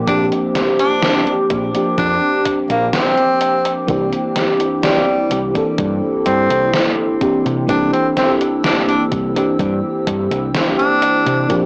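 Nostalgic and woozy, this vaporwave excerpt drifts at 63 BPM, with a bright, up-front tenor saxophone carrying a jazz-style solo melody full of vibrato over a lush, warbling FM electric piano and a detuned, slow-blooming tape-like pad soaked in chorus and plate reverb. Beneath them, an overdriven, round fingered electric bass sits with a thumpy sampler kick in the background and a gated 80s drum machine whose snare and hi-hat carry gated reverb and 12-bit grit, while the harmony moves from Bb69 to C9 at 3.9 seconds. The whole excerpt sounds like a home cassette played through a small speaker in a modest room, with the tape wear and echo adding to its hazy, faded glow.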